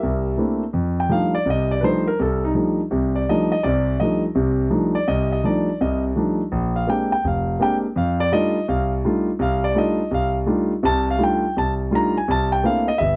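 Swung eighth notes in 4/4 drive this sophisticated, relaxed stretch of solo jazz, cut from a longer piece, in which a warm concert grand piano carries everything on its own from the opening through 13.2 seconds. Its deep bass and natural tone sit up front, moving through rich thirteenth chords that shift from F13 to Bb13 at 6.5 seconds and settle back before turning to C13. The sound is a dry, close 1970s-style studio recording, touched with light reverb.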